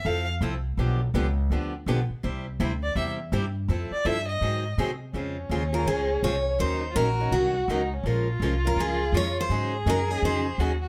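Acoustic string swing in the jazz manouche style, this charming excerpt from a longer piece moves with a swinging lilt. An upright bass anchors the music with a woody, dark, thumpy pizzicato tone from gut strings, sitting up front alongside a full-bodied jumbo steel-string guitar that plays a picked accompaniment with a bright edge from fresh strings. A rich, expressive violin, bowed by one player with vibrato and portamento, carries a featured solo in the opening section, then returns at 2.8 seconds and continues as a second line. A new section begins at 5.1 seconds, and at 5.7 seconds a parlour guitar joins up front with a picked melody. Light reverb gives the ensemble a gentle sense of space.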